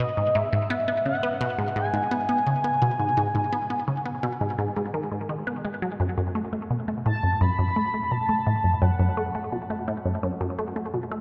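Bathed in a vast, echoing cathedral reverb, this cosmic, hypnotic ambient piece at 85 BPM in F# dorian sets a juicy, squelchy resonant blip pluck riff, bright and up front with ring modulation, phaser and delay, beneath a smooth, expressive sawtooth synth lead whose chorused, vibrato-tinged melody floats above a shift from G#m to F#m at 6.0 s until it stops at 9.9 s, while the pluck carries on alone to 11.2 s.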